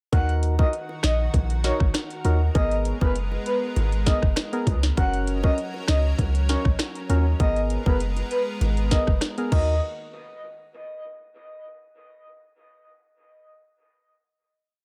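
Dancehall at 99 BPM in Eb minor, this short, complete piece has a tough, hypnotic mood, built on a chorus that cycles through Ebm, Abmadd9 and Gb before ending on a final hit at 9.8 seconds. An island pop drum kit sits up front with a tight kick, a sharp snare layered with rim click, metallic hi-hats and crash, carrying a dancehall beat where the syncopated kick is answered by the snare, all roughened by vintage 12-bit sampler grit. Beneath it, a clean 808-style bass booms deep and dark with a fast, decaying sine tone in a syncopated low line, while a hollow, organ-like stab adds dark, percussive syncopated chords with chorus. A breathy, flute-like synth lead floats a soft, sustained syncopated hook with vibrato, chorus and dub echo, and a lush, thick unison pad of detuned sawtooth and square tones enters at 0.5 seconds with slow-attack sustained chords and sidechain pumping. Very quiet, high-tuned bongos played with soft hands add a live-room pattern, and the whole echo-heavy mix is set in light reverb and digital ambience.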